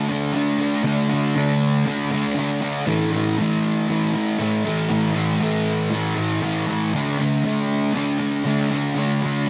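Blissful and hazy, this short rock excerpt drifts along at 118 BPM in a straight 4/4. A single electric fuzz guitar carries the whole 9.5 seconds, picked and double-tracked, sitting up front in the mix between A2 and D4. Its distorted tone is thickened by a lush chorus, giving the sound a warm, smeared glow. The harmony moves from D5 to A5 at 2.9 seconds and returns to D5 at 6.9 seconds. A huge ambient reverb with a long 7.4-second tail surrounds the guitar, and the dark, warm production deepens the dreamy haze.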